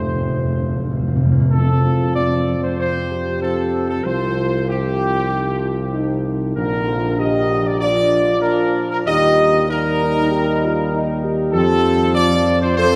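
A timpani fill struck with hard mallets opens this solemn, triumphant classical brass passage, sounding close, dry and articulate before it stops at 1.5 seconds. From the start, a clear trumpet section carries the melody, tight and up front, at a steady 96 BPM in a straight 4/4. Beneath it, a French horn section with a smooth top and a dusky trombone section hold sustained chords in the background, the trombones sounding distant and roomy. A mellow tuba anchors the bass with light vibrato. The harmony moves from F through Csus4, Bb and Eb before returning to F at 11.5 seconds, all set in a long cathedral reverb within a dark, warm production, cut from a longer piece.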